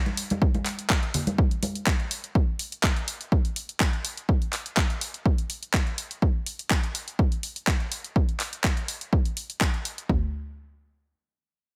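A late-night, moody house groove at 124 BPM in 4/4, with a light swing on the sixteenths, opens this excerpt cut from a longer piece. An overdriven analog drum machine carries the punchy kick and toms, sitting dry and up front with a touch of small-room ambience from 0.4 seconds. Alongside it, a layered, produced deep house kit supplies handclaps and hi-hat, also up front with its own small-room ambience, running until about 10.1 seconds. Ringing acoustic congas, played with hard hands and miked close, appear only briefly at the very start before dropping away at 1.7 seconds. The sound is stripped back and percussion-driven, set in a digital ambience, and a short new section begins just after 10 seconds as the kit falls away.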